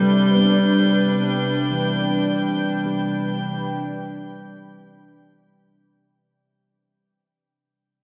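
Bathed in a wet cathedral reverb, this short ambient fragment sounds as if it drifts through a vast, echoing space, weightless and peaceful at a slow 53 BPM in 4/4, resting on a G chord and fading out from 0.2 seconds. Up front, an evolving wavetable pad holds sustained chords between G3 and G5, its detuned unison tone morphing gently under chorus, built-in reverb and shimmer reverb. Further back, muted felt-like synth keys play soft, dark arpeggios from E3 to D4 until 6.8 seconds, their intimate, decaying notes touched by ring modulation and a filter sweep and scattered by chorus and a diffuse ambient delay. Beneath them, a string-like bowed drone sits low between C3 and G3, nasal and tense, with vibrato and its own reverb. High above, a calm glass-harmonics texture rings on G6, its drifting overtones glistening through chorus and shimmer reverb. Cut from a longer piece, the passage feels like a suspended moment rather than a complete statement.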